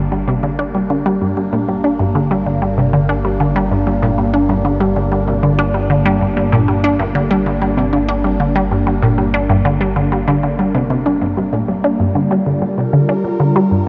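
A steady, straight 4/4 pulse at 96 BPM drives this ambient, sequencer-driven space music in G minor, tuned to A4 = 436 Hz, with an expansive, mysterious mood. Up front, a resonant blip pluck plays a riff from G2 to D4, its juicy, squelchy tone built from detuned pulse and sawtooth waves with a noise layer, a fast attack and short decay, colored by phaser and tape echo. Beneath it, a phased analog pad holds sustained chords between G3 and Bb4, its swirling, evolving sawtooth voice fading in over the first 11.2 seconds through phaser and chorus. A vintage, warbling analog drone anchors the bass on G1 with pulse-width modulation, a slow attack and long release under chorus, until it stops at 11.2 seconds. There the harmony moves from Gm to Gm7 for a brief closing section, all set in a huge reverb with an 8.5-second tail, in this short cut from a longer piece.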